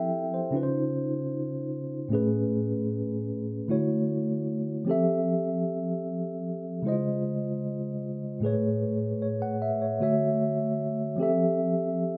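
In a straight, unhurried 4/4 feel, this short R&B passage, cut from a longer piece, carries a romantic and tender mood. A mellow tine electric piano plays alone throughout, sitting up front with a clean tone that sounds as if heard through built-in speakers, and it ranges from A2 up to G5. Its lush harmony moves through Fmaj9, C#maj9 and Amaj9. A second passage begins at 3.7 s on Dmaj9 and cycles through Fmaj9, C#maj9, Amaj9 and Dmaj9 before settling again on Fmaj9 at 11.2 s. A wet studio reverb adds a short halo, and the overall sound has the loose character of a rough home demo mix.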